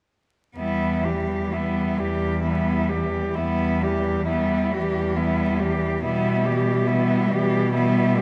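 Classical and lyrical, this melancholic, solemn excerpt for cello ensemble moves slowly in a rubato 6/8 at 42-47 BPM in E minor, with four bowed cellos entering together at 0.6 s: a focused, vibrato-rich melody up front, a smooth, even second line placed close, a distant accompaniment in the background, and a rich, smooth, even bass up front, all playing over an Em chord that settles over B at 6.0 s until 8.2 s, set in a reverberant concert hall with vinyl crackle.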